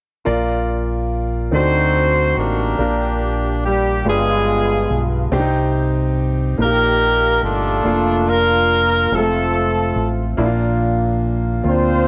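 Slow gospel in 6/8 at 48 BPM in B-flat major, uplifting and reverent, heard as a short cut from a longer piece. An open, up-front grand piano and a round, punchy fingered electric bass with a dark, amped dub tone carry the accompaniment from 0.3 seconds, moving through a progression that passes D7b9, G7b9 and Cm before settling on F and home to Bb. At 1.5 seconds a tight horn section takes the melody with smooth tops, light vibrato and pop-style octave doubling, everything sitting in light reverb.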